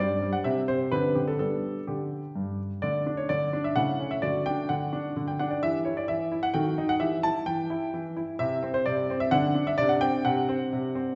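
A clear concert grand piano with a deep bass and short sustain plays alone throughout this elegant, cheerful excerpt of a classical-period sonatina in D major, moving at 129 BPM in a straight 3/4. It opens with a brief phrase over C, Am11/D and G, then a new section begins at 2.8 s, passing through Em and a D#dim before landing on a D7/C. A wet recital hall reverb places the listener further back in the room, with nothing heard above 7.8 kHz.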